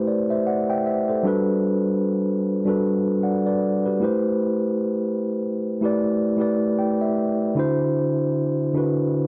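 R&B with a late-night, longing mood, this excerpt features a lone tine electric piano, mellow, clean and up front with a gentle sixteenth-note swing, moving through Am9 and Gmaj7 chords, adding a fill from 6.4 to 7.6 seconds before shifting to D7 at 7.6 seconds, all set in an echo-chamber reverb and tuned slightly flat to A4 = 436 Hz.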